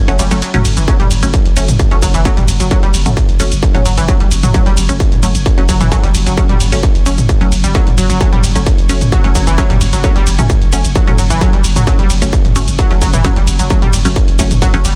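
Driving peak-time techno with a hypnotic, relentless mood, cut from a longer piece. A distorted, up-front electronic kick arrives at 0.9 seconds over a techno kit of warm hats, ride cymbal, shaker and toms that pump with sidechain, while a growling, buzzy 808-style bass with tube saturation anchors the low end. A round, nasal analog pluck riff with chorus and delay and a muted, resonant dub chord stab with phaser and dub echo both pump with sidechain, as a very quiet swarming, warbling drone hovers beneath in a dense, heavily limited, dry mix.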